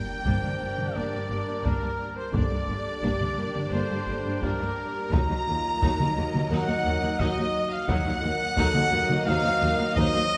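A huge, bright impact opens this relentless, dramatic slice of epic orchestral film score as an up-front trumpet fires stabs over a clear violin melody, a very quiet second violin line and sustained chords from present trombones, mellow French horns and a lush string section, while from 0.3 s heavy-stick taiko drums, a smooth viola accompaniment and focused cellos and expressive double basses on the low end join in a wet concert hall.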